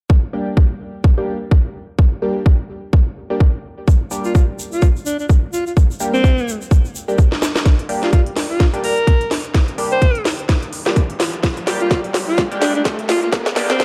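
A clear alto saxophone with light vibrato carries a classical-style solo line from 4.2 seconds over a tight, tape-warm electronic kick, nasal band-passed sawtooth chord stabs pumping under chorus, phaser and tape echo, a grainy tube shaker, cracking snare and crisp hats from 7.3 seconds, and a background riser at 9.4 seconds, in a gritty, swaggering bass house excerpt in G minor at 127 BPM with a swung 16th-note feel and a dark, filtered build-up.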